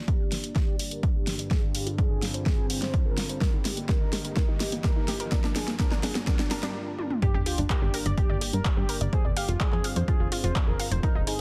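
Melodic techno at 126 BPM in G phrygian, hypnotic and melancholic and cut from a longer piece: a dark, detuned analog pad with phaser and 12-bit grit and a resonant, evolving analog drone sit in the background under sidechain pumping, while a smooth, expressive synth lead with vibrato and delay carries a filter sweep through the build-up and a lo-fi, warbling dusty pluck spins chorused arpeggios through digital delay; an overdriven deep house kit of fat snare, handclaps, hi-hat and toms plays a fill across the build-up beside a punchy, up-front electronic kick and a very quiet riser and sub drop, and after a brief break the drop lands at 7.2 s, with a funky, wave-folded plucky analog bass entering at 7.3 s, in a dense, heavily limited master with little reverb and a small room ambience on the drums.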